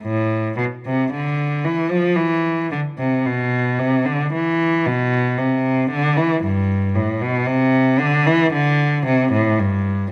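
Grave and flowing, this slow baroque-style suite movement for unaccompanied cello moves at 56 BPM in 3/4 with a free rubato feel, as a single bowed cello, rich and focused with vibrato, sits up front between G2 and F3, captured by close, detailed microphones in a moderate recital-hall reverb across this 10.1-second fragment of a longer piece.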